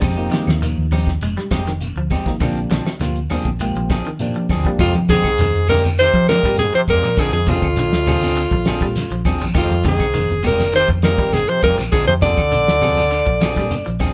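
This driving, funky afrobeat excerpt opens on a dry, damped drum kit with a fat snare and tight kick, a dark, round hollow-body bass, and two slightly broken-up picked electric guitars, one playing twangy arpeggios in the background and the other playing stabs. Woody claves, a grainy, distant shekere and very quiet, low-tuned congas fill out the percussion, while a barky, lightly overdriven electric piano comps over Fm9 and Bb9 until 4.8 seconds. From there a bright, up-front alto saxophone carries the melody with scooped notes and light vibrato, joined by a nasal trombone with straight mute on a second line, all in the light reverb of a band playing live in one room.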